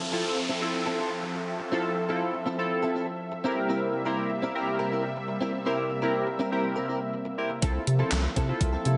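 A straight dance-pop pulse is implied from the start, though the gated, sampler-style drum machine only arrives at 7.6 s with a thumpy kick, hi-hat, handclaps and an overdriven snare drenched in gated reverb. The mood is carefree and euphoric, built on a smooth, detuned sawtooth pad that holds sustained chords with chorus, tremolo and sidechain pumping, while a glossy, retro polysynth mixing pulse, sawtooth and triangle waves plays mellow accompaniment with filter sweeps, pumping and slapback echo. A clean, direct-recorded electric guitar picks a bright, compressed riff coated in ensemble chorus and slapback echo, and an electronic downlifter sweeps through the opening until 3.7 s. Alongside the drums, a deep, thick, saturated sine sub bass lands up front, pumping against the beat as the chords move from Fmaj7 through C7 and back to Fmaj7 over C. A lush digital hall reverb gives this short cut from a longer piece a big arena sound with a softened top end.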